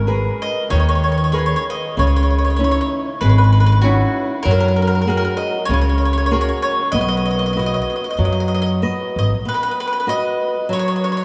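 Bathed in a vast, echoing cathedral reverb, this romantic and lively Italian folk serenade excerpt sways with a light swing as a woody, double-strung mandolin picks the melody up front over bright, fresh-stringed flamenco fingerpicking on guitar, while a growly, thumpy pizzicato upright bass anchors the add9-coloured harmonies until it drops out at 9.4 seconds.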